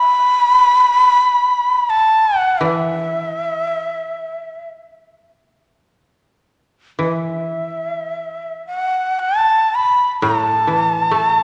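A breathy, bright shakuhachi opens this calm, austere fragment of Japanese chamber music with a reedy, up-front melody, joined at 2.6 seconds by a mellow, woody koto playing low accompaniment, both set in a moderate stage reverb.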